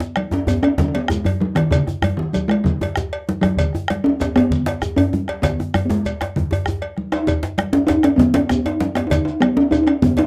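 A rough home-demo recording with light reverb opens on a West African traditional drum ensemble, cut from a longer piece. It is driving and earthy in 12/8 at 130 BPM, speeding up across its 10.3 seconds, with a resonant talking drum up front carrying the melody between C#3 and D#4 in B major pentatonic. Beneath it sit a round, dry bombo, a tight, cracking djembe in the background, a second djembe with metal rattles, thick-skinned vintage congas, a metallic cowbell and a grainy, mellow shekere far back in the mix.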